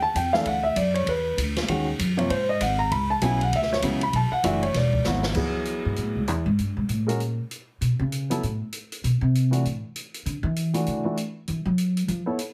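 This jazz piano trio swings through a late-night groove in 4/4, lifted from a longer piece. A concert grand piano carries the melody with a warm, up-front tone and a deep low end, taking a solo over changing seventh chords from the start until 5.4 seconds. Beneath it, a pizzicato upright bass with steel strings sounds woody and dark, sitting close in the mix. The open drum kit brings dark cymbals, a medium-tuned snare and a boomy kick in a natural studio room, and a short drum fill around 5.0 seconds leads into the upright bass solo, which runs from 5.4 seconds to the end over sparser, suspended and open harmonies. Light reverb and a heavily compressed, radio-like sound give the whole recording a close, boxed-in character.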